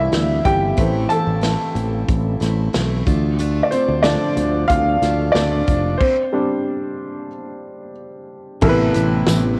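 Earnest and driving, this piano-driven pop excerpt in A minor at 92 BPM features a woody, intimate upright piano taking the lead with audible action noise, including a stop from 6.0 to 8.6 seconds, over a growly, punchy fingered electric bass, a full-bodied picked steel-string acoustic guitar riff with finger squeak set in the background, and a natural country drum kit with bright cymbals and a tight kick given a cassette tape character, before a jingly tambourine appears at 9.3 seconds, all in a home-recorded cassette sound with light reverb.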